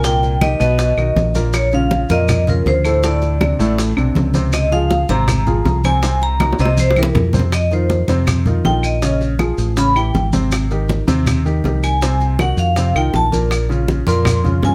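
Lightly reverberant and cut from a longer piece, this fiery, sophisticated Afro-Cuban jazz passage sets a ringing, bright vibraphone melody with medium motor vibrato over an up-front, woody upright piano and a dark, punchy electric bass, with low-tuned, round bongos, thin-skinned congas in the background, grainy vintage maracas and band-limited claves in the percussion, and a fill at 6.4 seconds leading into a vibraphone solo from 7.5 seconds.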